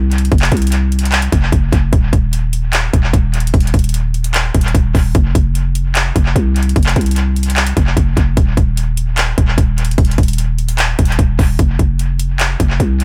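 Hard-hitting and eerie, this short trap fragment of a hip hop track moves in a heavy half-time feel in 4/4. A growling 808-style bass sits up front from the first moment, its sine tone turned buzzy, with a fast attack and a decaying tail in the low register. The electronic trap kit comes in at 0.1 seconds, pairing a hard-clipped kick with metallic hi-hats and handclaps, and tape echo trails the drums. The dry, echo-heavy mix keeps both parts close and produced-sounding. At 11.6 seconds the music shifts into a new section that carries on until the cut at 13.0 seconds.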